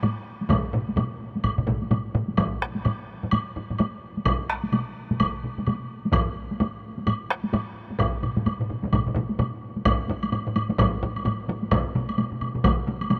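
At the opening, taiko drums struck with heavy and hard sticks sound together with a woody woodblock in a live room, the hard-stick drum close and dry up front. This is a powerful, ceremonial Japanese traditional taiko ensemble piece at 128 BPM in 4/4 with a swung sixteenth-note feel. Two more taiko parts join at 0.5 seconds: one struck with heavy sticks in a small room in the background, the other played with hard sticks, vintage and band-limited, up front. The full group sits in a huge ambient reverb as the section shifts at 9.9 seconds.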